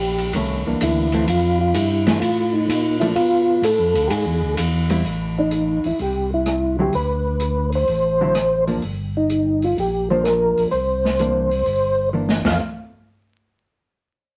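Two tonewheel organ parts open this bluesy, soulful soul jazz organ trio cut from a longer piece, swinging in 4/4 at 127 BPM in F major. Up front, a soft, flute-like organ carries the melody with a percussive attack, chorus vibrato and a slowly turning rotary speaker, while a second organ handles the bass with light overdrive, audible key click and the same slow rotary and chorus colour. An acoustic jazz kit joins at 0.2 seconds with a boomy kick, a medium-tuned snare and dusky cymbals, and a clean, fingered hollow-body electric guitar adds compressed, shadowy accompaniment beneath the melody. The changes move from C9 and Fmaj7 through Bm7b5 and E7, then from Am and D7 to Gm7 and C9 before resolving on Fmaj7. A drum fill at 12.1 seconds leads toward that closing chord, all set in a moderate studio reverb with a layer of vinyl crackle.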